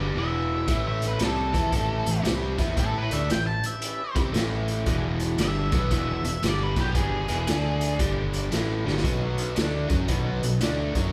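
A biting, double-tracked overdriven guitar sits up front, picking a raunchy riff through this swaggering 11-second excerpt of blues rock power trio and southern rock at 115 BPM in 4/4, with a 65% swing on the eighths. Beneath it, a dark, round fuzz bass, fingered and overdriven, carries the low end, while an octave-fuzz lead guitar, distorted and picked with digital delay, sings the melody until 8.0 seconds. The raw garage drum kit arrives at 0.7 seconds with hi-hat, a boomy kick and a medium-tuned snare, sounding gritty, saturated and pumping with a rolled-off top, and it plays a fill at 8.8 seconds. Very quiet in the background, a thick overdriven tonewheel organ holds sustained chords through a slow rotary speaker with chorus vibrato. The harmony moves through E7, A7, D5, G5 and B7, and the band plays live together in one room with a moderate large-studio reverb.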